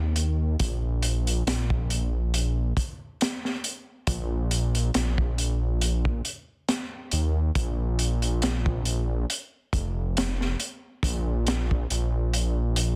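A slow trip hop groove at 69 BPM in 4/4, lightly swung on the sixteenths, rides on a crunchy breakbeat kit that enters at 0.2 seconds, its punchy kick, high-tuned snare and hi-hat sounding gritty and saturated with a rolled-off top, as if played in a small room. Beneath it, a dark detuned saw bass holds deep, rumbling sustained notes from the very start, its beating tone mellow with a fast attack and sitting up front beside the drums. The mood is smoky and brooding, with little reverb and a dense, heavily limited modern master on this short cut from a longer piece.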